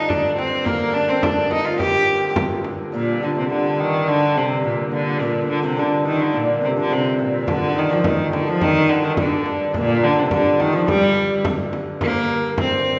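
A rich, biting viola da gamba carries the melody up front in this ancient, driving medieval dance excerpt, with a breathy bass recorder and a shimmering hammered dulcimer weaving second lines over a dark hurdy-gurdy drone, while a small, bright frame drum played with soft hands drops out at 2.9 seconds and returns at 7.5 seconds, all set in the reverberant space of a church or concert hall.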